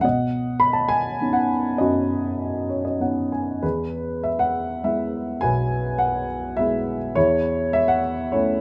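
A dark upright piano opens alone, sitting up front with a mellow, woody tone and a light touch of reverb around it. This is lyrical classical solo piano in 3/4 at about 102 BPM, played with rubato so the pulse breathes freely. The mood is bittersweet and moody, with the harmony moving from Badd9 to E and then settling on A/E near 7.2 seconds. A short piano fill arrives at 2.4 seconds, just before the shift to E. Spanning B1 to B5, the brief passage is cut from a longer piece.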